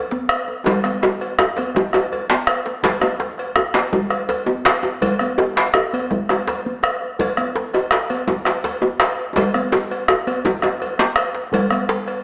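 A compressed, saturated djembe sits up front with a tight, cracking voice, playing alongside a second dry djembe, ringing high-tuned congas played with soft hands, a deep, dark bombo and a metallic, distant cowbell. This powerful, festive West African drum ensemble piece moves at 110 BPM in 12/8, with drum fills from 0.7 to 2.8 seconds and again from 9.4 seconds. The short clip, cut from a longer piece, has a moderate recital-hall reverb and a small-speaker sound.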